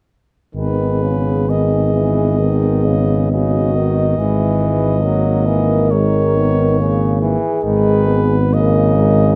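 Closely miked with light reverb, this melancholic, elegiac fragment of a hymn-like classical piece for brass band unfolds in a rubato 4/4 at 63-71 BPM in G# minor: a clear flugelhorn carries the melody over a mellow French horn section with light vibrato on the second line, a warm euphonium sits in the background, a brilliant, vintage-toned trombone adds accompaniment, and an up-front tuba holds G#1 beneath chords moving from G#m to C#m/G# at 4.2 seconds and back at 7.7 seconds.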